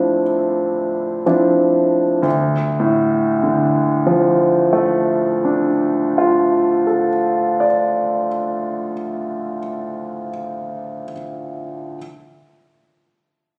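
A clear concert grand piano opens on a Dm9 chord, slowing in the first 2.2 seconds before settling onto D minor, in this hazy, nocturnal impressionist solo piece of free rubato cut from a longer work, its intimate, up-front tone pairing deep bass and long sustain with audible action noise, polished and present within a moderate scoring-stage reverb despite being captured on a phone in the room.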